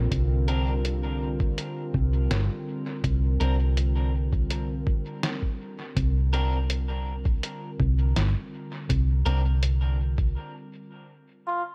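A straight 4/4 pulse at 82 BPM is set by a muffled, thumpy electronic kick placed up front, alongside a pitched-down, sampler-style kit whose hi-hat and medium-tuned snare trail off into dub echo. This short ambient dub excerpt has a hazy, meditative mood, resting on a Bbadd9 chord from the opening. A round, dark hollow-body electric bass with tube saturation sits forward in the mix, while a warbling, nostalgic pad of detuned sawtooth and triangle tones sustains chords with a slow attack, chorus and its own reverb. Compressed electric guitar stabs, slightly broken-up and picked, drift through lush chorus and dub echo at a low level. The band drops out in a break at 10.4 s, and a soft, veiled cup-muted trumpet plays a brief solo note at 11.5 s, all framed in a digital ambience.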